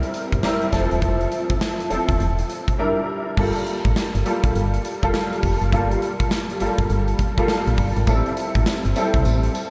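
This slick, confident new jack swing cut opens with piano, bass and drums together, riding a 102 BPM groove with a sixteenth-note swing. A clear concert grand piano carries the chords up front, its smooth, vintage tone given depth by an ensemble chorus. Beneath it, a punchy FM bass with a round, dark, digital tone and a fast attack decays after each note and anchors the low end. The big rock drum kit sounds acoustic and roomy, with a punchy kick, a medium-tuned snare, bright crash and hi-hat, and tambourine on top. The harmony moves from C7 to Fmaj7 and Em7b5, then settles onto Gm9 at 3.4 seconds before turning to Am7 at 8.1 seconds. A huge ambient reverb soaks the mix in a dreamy haze, and the clip, cut from a longer piece, runs out at 9.7 seconds.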